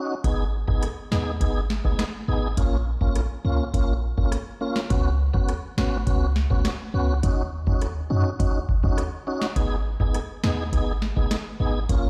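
Heard through a big sound system in a bare room, this hypnotic, tough dancehall groove carries a stony reverb that hangs around every hit. A tonewheel organ sounds first at 0.0 seconds, full and clean with audible key click, chorus vibrato and a fast rotary speaker, its comping pumped by sidechain compression as it moves through Abm, Bbm, Db7sus4 and Ebm7 before returning to Abm. At 0.2 seconds a booming analog drum machine and a clean 808-style bass arrive together, holding a straight 4/4 pulse at 103 BPM. The drums sit up front, overdriven and re-recorded in a small room, with a deep kick, crisp snare, rim click and metallic hi-hats. Underneath, the sine-like bass is boomy and mellow, with a fast attack and notes that decay, and it runs until the cut at 12.1 seconds.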